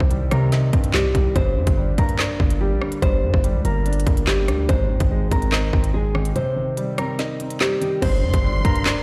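A punchy, heavy 808 bass and an up-front drill kit with a hard-clipped kick, woody snare, crisp hi-hats, rim clicks, handclaps and crash drive this tense, dark half-time drill cut at 144 BPM in G phrygian, while a full-bodied, fingerpicked nylon-string guitar carries the melody through a low-pass filter and tape echo over a mellow, vintage grand piano with audible action noise. A break arrives at 6.4 seconds, and at 8.0 seconds a lush, distant violin section enters, followed at 8.1 seconds by a very quiet electronic impact, all heard as if played through a big sound system in a bare room with large studio reverb.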